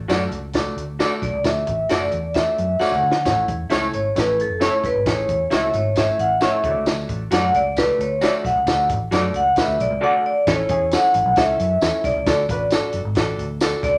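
Uplifting and danceable, this short cut from a longer uptempo 1960s-style soul piece moves at 133 BPM in a straight 4/4, tuned to A4 = 435 Hz. The vibraphone, struck with medium hard mallets and carrying a medium motor vibrato, enters at 1.2 seconds and takes the lead with a metallic, ringing, up-front tone. Beneath it, a compact cocktail drum kit with a high-tuned snare and punchy kick sounds tight and natural, adding a fill just before the harmony moves from D to A, while a jingly tambourine sits in the background of a live room. A dark, round, foam-muted fingered electric bass anchors the low end, a clear, intimate grand piano with audible action noise fills in the accompaniment, and an electric guitar through a small old amp adds slightly broken-up picked stabs until about 10.1 seconds. The chords shift between D and A, with a new section arriving at 10.5 seconds, and the whole band sits in a wet club reverb.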